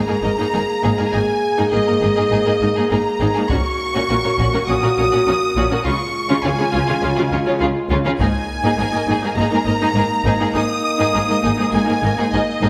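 A clear, intense violin section carries the melody up front in this heroic, epic orchestral film-score excerpt at 102 BPM, its vibrato soaring over mellow, roomy French horn chords and a smoother second violin line. Warm, lush violas with portamento sit in the background while rich, bowed cellos and double basses anchor the low end in a reverberant scoring-stage space. A close, dry taiko ensemble struck with hard sticks enters at 3.5 seconds and stops at 9.3 seconds, adding weight as the harmony moves from G#sus2 through F#/A# and C# before returning to G#sus2.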